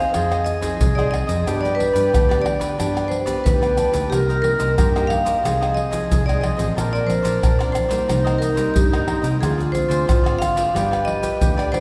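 A close-miked vibraphone struck with medium hard mallets carries the melody, its metallic, ringing tone dry and full with the motor off, in this bittersweet, nostalgic samba and choro passage cut from a longer piece. Beneath it, a reedy baroque flute traces an airy second line with vibrato and tongued notes. A crisp picked cavaquinho and a fingerpicked classical nylon-string guitar, the guitar sitting in the background, fill out the accompaniment through a minor-key progression that closes on a G7. A vintage muted fingered electric bass gives a dark, round, punchy foundation, while tube shaker, a deep surdo, pandeiro and tamborim enter at 0.1 seconds, up front and sounding as if in a small room. The whole runs just under 12 seconds, set in a wet scoring-stage reverb with the spacious feel of a church or concert hall.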